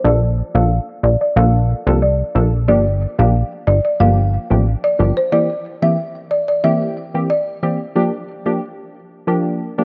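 Sultry and tough, this dancehall excerpt moves at 91 BPM in a straight 4/4 feel in G dorian, cut from a longer piece. A punchy, funky analog bass with a wave-folded, ring-modulated edge sits up front in the low register, then stops at 5.1 seconds, just before a break opens at 5.3 seconds. Dark, detuned wavetable chord stabs with a crisp digital bite carry the harmony through Bbmaj7, Gm7 and C7 before settling back on Gm7, running to the end at 9.8 seconds. Above them, a woody, rustic folk marimba played with medium mallets carries the melody in a narrow upper range, its dry hardwood tone softened by a low-pass filter and trailed by tape echo until 7.8 seconds. A filter sweep runs through the first 8.0 seconds, and the whole recording has a worn cassette character with warbly pitch drift under a light studio reverb.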